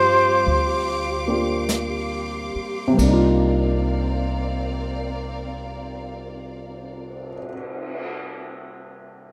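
A breathy, up-front flugelhorn opens this short fragment of a wistful, intimate jazz ballad in C minor, sounding a single scooped, vibrato-tinged C5 before falling silent at 1.7 seconds. Beneath it, a concert grand piano with audible action noise and a deep low register carries the accompaniment through to the end, while a lush, softly bowed symphonic string section holds sustained chords and a woody, thumpy pizzicato upright bass anchors the low end. A vintage brush kit with dark cymbals and a rolled-off top joins at 0.5 seconds, adding brushed snare, hi-hat, kick, a crash and a cymbal swell at a low level. The tempo sits around 45-51 BPM in a swung 4/4 and slows over the opening seconds, as the harmony moves from G7sus4 to Cm11 at 3.0 seconds. A wet club reverb wraps the ensemble. After the strings and bass stop at 7.4 seconds, the piano and brushes carry on together, and the piano rings on alone once the drums stop at 8.0 seconds.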